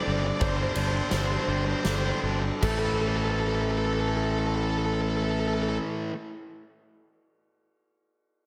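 Post-rock in A minor and 3/4 at 75-89 BPM, this brooding, melancholic fragment of a longer piece slows over its first 2.6 seconds as a Gsus4 chord resolves to A minor. Up front, a growly fuzz fingered bass and a bluesy, distorted lead guitar melody with slapback echo sit over riffs from a bright, tight distorted guitar and a hollow-bodied overdriven semi-hollow guitar, while a twangy pedal steel guitar holds sustained chords at a barely audible level. A very quiet, felt-muted upright piano plays mellow arpeggios until 3.0 seconds, and a punchy, big-room arena drum kit with crash, ride, snare and kick sits in the background from 0.4 to 2.8 seconds, all set in a lush hall reverb for a huge arena sound.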